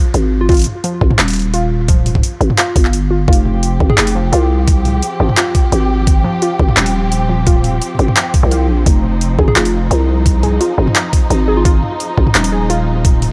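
Half-time drum and bass at 172 BPM in F minor, spacious and heavy, built on an up-front growling 808-style bass and an overdriven drum kit with bright hats, handclaps and toms over a knocking electronic kick, while a warbling, lo-fi pluck runs arpeggios through tape echo, a dark, woody string section carrying 12-bit grit and sidechain pumping enters with sustained chords at 3.3 seconds, and a round, gentle FM lead drifts in the background in brief phrases before a longer one from 9.5 seconds, all in a dry mix cut from a longer piece.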